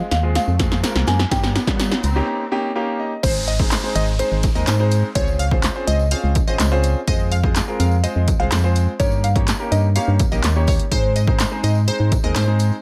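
This euphoric, upbeat dance-pop excerpt opens on a build-up: a buzzing, woody marimba carries the melody over a clear concert grand piano, a hollow, organ-like FM bass and a riser and downlifter in the background, while a punchy analog drum machine plays a fill and the piano adds its own fill before a brief break. At 3.2 seconds the drop arrives, and a glassy, crystalline wavetable pluck with chorus, phaser and delay takes over the melody. The piano, bass and pluck pump against the sidechain over the tape-warm drum kit and a jingly tambourine tucked in the background, all with little reverb.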